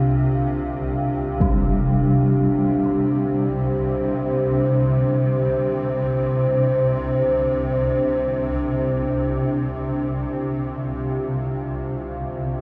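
A dark analog pad and a swarming, detuned drone open together, the pad holding deep, moody sustained chords on Csus2 colored by chorus and phaser while the ring-modulated, granular drone churns low and up front, both sitting in a vast, ominous dark ambient space in free time. At 1.4 seconds a huge, bright impact, softened by a low-pass filter, marks the entry of a gamelan-type bronze metallophone whose ringing arpeggios, with their paired-tuning shimmer and diffuse delay, linger in the background until 7.1 seconds. A cavernous reverb with an 8.3-second decay surrounds this fragment of a longer piece, tuned to A4 = 439 Hz.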